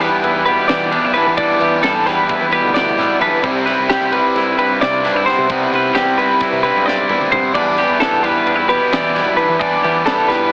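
Three guitars open together at once in this playful, bright slice of math rock and midwest emo, a chiming twelve-string arpeggio sitting up front beside a double-tracked, crunchy overdriven riff while a clean, fingered electric guitar adds twangy accompaniment, all moving at 263 BPM in 9/8 over Em7 and Cmaj7. Beneath them growls an overdriven bass, while a crisp fusion kit with a high-tuned snare and punchy kick stays in the background, the drums breaking into a fill at 6.9 seconds before the harmony returns to Em7 at 7.6 seconds. The dry, heavily squeezed mix has the character of an AM radio broadcast.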